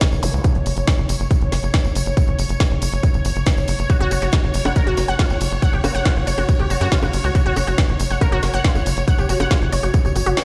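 Alien and driving, this psychedelic trance excerpt moves at 139 BPM in a straight 4/4, sitting on an F#5 chord throughout. A tight, tape-toned electronic kick sits up front with a tight sequencer bass, a nasal, punchy sawtooth-and-square line running from F#1 to F#2. Around them, an overdriven drum kit adds bongos, a woody snare and bright hats, while a jingly acoustic tambourine stays close and dry in the background. Underneath, a swarming drone of detuned sine voices holds tense, evolving sustained chords with granular texture, built-in reverb and sidechain pumping. At 3.9 s a lush, detuned unison pluck enters with a wave-folded, ring-modulated riff, treated with digital delay and sidechain pumping, and around 5.8 s a very quiet vowel-sweep wobble bass briefly sounds a single A#3. The whole mix feels as if played on a big sound system in a bare stone room.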